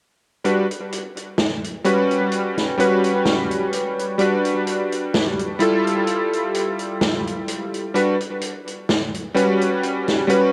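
A bright, cutting electric grand piano with a clangy low end and a vintage drum kit playing hi-hat and snare enter together at 0.4 s, setting a nostalgic, faded vaporwave mood at a slow 64 BPM in 4/4 with a light swing on the sixteenths. The up-front piano, colored by analog chorus and tape echo, moves through Gmaj7, Gmaj7#11 and Fmaj9 in G lydian, while the acoustic kit also sits up front with a warm, medium-tuned snare and a rolled-off top. A moderate plate reverb and an echo-heavy, cassette-tape sound give this short passage, cut from a longer piece, a hazy, worn character.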